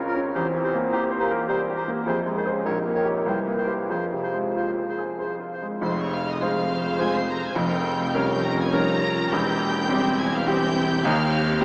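Classical romantic music for piano and orchestra, tragic and brooding in a rubato triple metre, in which a clear, up-front grand piano carries the melody throughout while a dark, distant bassoon, a close-miked oboe, a mellow clarinet and a hollow, very quiet flute ensemble shade it through the opening section. At 5.8 seconds rich violin sections with vibrato take up melody and second line over background violas, a very quiet dark tuba, smooth cellos and double basses, with soft, round timpani from 7.6 to 8.4 seconds, all bathed in a vast, echoing reverb with a small-speaker sound.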